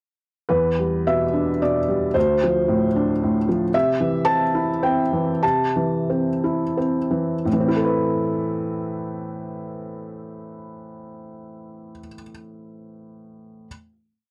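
Neoclassical minimalist piano in a rubato 3/4, an intimate, wistful miniature for solo felt-muted upright piano, mellow and boxy with audible action noise, carrying a single-line melody over rocking broken chords through Em7, Dm7 and C, slowing from 3.0 to 7.5 seconds before settling on a final Amadd9 at 7.5 seconds, all captured up front in a dry, gritty recording with transformer saturation and light reverb.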